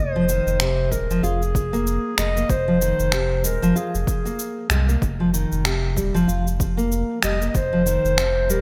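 A dark, smooth-topped clarinet sings up front over a round, deep sub bass with tube saturation and sidechain pumping in this mystical organic downtempo excerpt, joined at 0.2 s by a fingerpicked nylon-string guitar playing full-bodied arpeggios, with digital delay on both guitar and clarinet. Electronic cabasa and finger snaps, re-recorded in a large room with gated reverb, set a swung groove, and a punchy, layered electronic kick enters at 0.9 s, while a small, dry udu sounds very quietly at 4.7 s. The harmony moves from Fm7 to Eb under a moderate plate reverb and a bright 1980s-style digital sheen.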